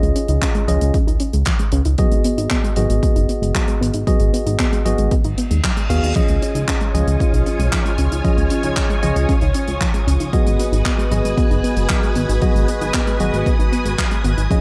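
A chorused synth bass anchors this melodramatic, danceable italo disco cut, its glossy, evolving pulse-wave and sawtooth tone thickened by tube saturation and pushed up front with a punchy analog electronic kick that enters at 0.4 seconds. The piece moves at 115 BPM in a straight 4/4 in G# dorian, circling between C#add9 and G#m7. A soft, warbling pluck plays arpeggios through chorus, cassette-tape colouring and delay, while a clean tine electric piano adds stabs shaded by a low-pass filter and its own delay. A dry, damped 70s drum kit supplies hi-hat, handclaps and dark crash cymbal in a modest studio ambience. A reverse cymbal sweeps in at 5.4 seconds, leading into a lush string machine that holds full, slow-attack chords from 6.2 seconds, all set in a generous studio reverb for this excerpt from a longer piece.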